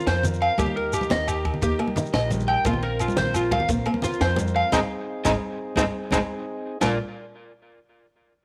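A slightly broken-up electric guitar sits up front, picking arpeggios from C4 to G5 through a subtle chorus and tape echo in this carefree, danceable highlife guitar band excerpt, moving at 116 BPM in a straight 12/8. Beneath it a bright, boxy parlour steel-string acoustic guitar fingerpicks a low accompaniment with audible finger squeak, while a woody, thumpy upright bass on gut strings plays pizzicato. A reedy vintage combo organ holds sustained chords in the background as the harmony moves from Bbsus2 to Eb, back to Bbsus2, then to Ab at 4.7 seconds and Bb at 6.8 seconds. Percussion layers a grainy, close shekere, ringing agogo bells and compressed, saturated congas struck with hard hands over a dry cocktail drum kit with dark cymbals, a high-tuned snare and a punchy kick. From 4.7 to 6.8 seconds the drums play a fill under a band accent, all within a small room with light reverb.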